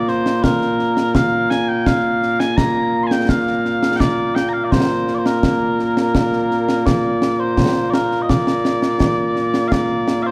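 Scottish pipe music in a ceremonial, proud mood, this excerpt from a longer piece in 2/4 sets mellow, sweet small bagpipes up front carrying a continuous melody with vibrato, supported by close, acoustic concert snare and bass drum with bright cymbals, all in a moderate concert hall reverb as the tune moves into a new section at 6.9 seconds.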